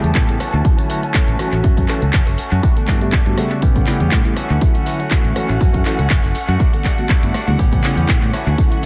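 A swung groove at 121 BPM drives this funky, joyful filtered disco house excerpt, with a punchy, up-front electronic kick entering at 0.2 seconds beneath a tape-warm analog drum machine of handclaps, rim clicks and pumping, echoing hi-hats. A direct, fingered electric bass with tube saturation anchors the chords from Dmaj9 through F#m7, Em11 and A9, while a worn, slightly out-of-tune tine electric piano with overdrive, phaser and tape echo carries the accompaniment, and a bright, twangy clean guitar riff echoes alongside. Lush bowed violins hold soft-edged chords in the background as a filter sweep runs across the whole dry, echo-heavy mix, with sidechain pumping on the hats, bass, electric piano, guitar and violins.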